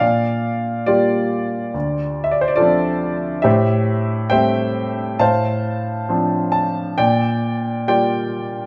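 A warm, smooth grand piano with a vintage character sits up front in light reverb, playing a melancholic, wistful classical solo in D minor at a rubato 69 BPM across a brief excerpt cut from a longer piece, ranging from D2 to A5 over chords that move from Gm7/Bb through Dm7 and Am7 and back to Gm7/Bb by 7.0 seconds.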